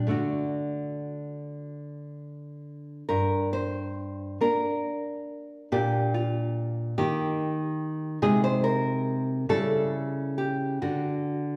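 Two fingerpicked nylon-string guitars open together on a D chord, setting a yearning, melancholic romantic mood in G minor. The tempo is slow and rubato, roughly 39 to 49 beats per minute counted in dotted quarters of a 6/8 metre, with tuning set slightly low at A4 = 439 Hz. One guitar carries the melody in a narrow upper range with a small, intimate tone, while the other supplies a classical-sounding accompaniment reaching down into the bass, both sitting up front in the mix. After a brief opening phrase, a second section begins at 3.1 seconds on G minor and moves through B-flat, E-flat, A-flat over C and a C-sharp diminished chord before settling back on D. A wet recital-hall reverb with a 1.4-second decay gives the warm-toned duo a church-like bloom, and the passage, cut from a longer piece, ends at 11.6 seconds.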